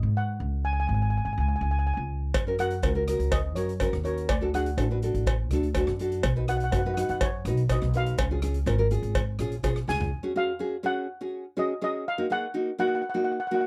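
Bouncy and sunny, this calypso excerpt opens with a mellow, shimmering steel pan lead over woody pizzicato upright bass, joined at 2.3 seconds by a street-band drum kit with a boomy kick and a small-room cowbell, then by a fingerpicked, full-bodied nylon-string guitar, before a drum fill at 9.9 seconds leads into a closing passage of pan and guitar alone in a dry, close 1970s-style studio sound.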